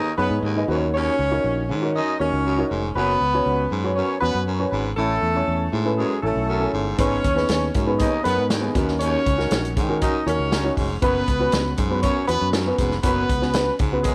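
A straight, uptempo 4/4 pulse drives this uplifting 1960s-style soul fragment, cut from a longer piece. An up-front horn section carries the second line with a smooth top, light vibrato and loose jazz-style octave doubling, its sound trailed by tape echo. A dark, woody upright piano gives intimate, boxy accompaniment with long sustain and audible action noise. Beneath them, a breathy, raspy baritone saxophone repeats a gritty low riff, and a punchy fingered electric bass comes in at 0.2 seconds. At 7.0 seconds a vintage acoustic drum kit joins with a punchy kick, a medium-tuned snare, hi-hat and a rolled-off top, all set in light reverb under a warm, uplifting mood. The harmony cycles through G#m, D#m7, F#sus4 and A.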